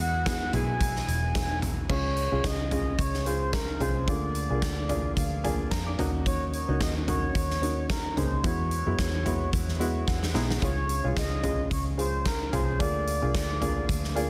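Hopeful and anthemic, this piano-driven pop excerpt moves at 110 BPM with a light 16th-note swing, as a worn, woody upright piano carries the accompaniment with fills at 4.6 and 9.8 seconds, a reedy accordion with delay sings the melody, a lush bowed string section hovers in the background only until 1.9 seconds, a dark, foam-muted fingered electric bass rounds out the low end, and a huge arena drum kit with bright cymbals and a punchy kick enters at 0.3 seconds and plays a fill at 10.1 seconds, all in a small room under a dense, heavily limited modern master.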